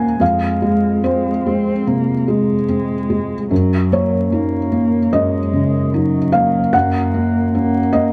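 Neoclassical piano and strings in a reflective, melancholic mood, this short passage, cut from a longer piece, moves at an unhurried pace in 4/4 with a rubato feel. A felt-muted upright piano carries the accompaniment from start to finish, sitting up front with a soft, mellow, intimate tone, thick felt dulling its hammers and audible action noise giving it a vintage character. Alongside it, a single bowed cello plays con sordino as a second line, its veiled, muted voice colored by vibrato and set lower in the mix than the piano. The harmony drifts from F minor through Ebm7 over Gb before settling on Gb near 6.7 seconds. Spring reverb lends the space a moderate tail, while the dark, warm production and vinyl crackle give the whole a worn, nostalgic atmosphere.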